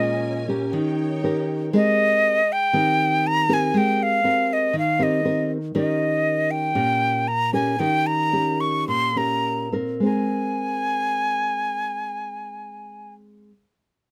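Close, detailed microphones and a light reverb give this short bossa nova cut an intimate, polished sound, with the flute and guitar both placed up front. Sophisticated and relaxed, it moves in a straight 4/4 in A-flat major at around 102 to 120 BPM, easing into a slowdown between 5.7 and 10.0 seconds. A jazz flute carries the melody with an airy, metallic tone, a soft attack and expressive vibrato. Underneath, a classical nylon-string guitar supplies thumb-plucked acoustic accompaniment throughout. For just the opening 1.7 seconds, a lush bowed string section adds smooth, focused sustained chords over B-flat minor 7 and E-flat 7. The harmony then settles on A-flat major 9, returns to E-flat 7, and closes on a warm A-flat add 9 chord.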